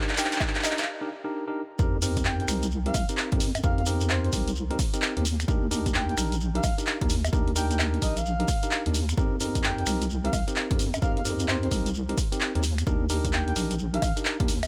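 A swung, skippy two-step garage groove starts at once, with an analog drum machine of bongos, finger snaps, handclaps and hi-hat sitting up front beside a punchy electronic kick and a grainy, mellow shekere heard close. Clean tine electric piano stabs with delay come through a combo amp, a very quiet airy pad is heard only until 0.9 seconds, and a breathy, flute-like synth lead with chorus, vibrato, delay and cassette tape coloring floats in the background. After a short build-up and break, the drop lands at 1.8 seconds as a deep, dark wobble bass with saturation and chorus enters, giving weight to this moody UK garage passage over ninth chords.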